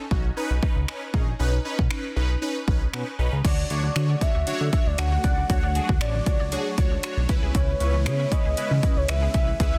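Driving and confident, this dance-pop excerpt at 117 BPM opens with a punchy, overdriven house drum kit, a dark, glossy chorused synth bass and a fat, phased polysynth pumping against the kick over Badd9, then at 3.4 seconds a velvety, vibrato-tinged lead with chorus and digital delay arrives alongside huge supersaw chords in the background and a faint, warbling unison pluck playing arpeggios as the harmony moves through Dmaj7 to C#m7, all set in digital ambience with a dense, heavily limited modern master.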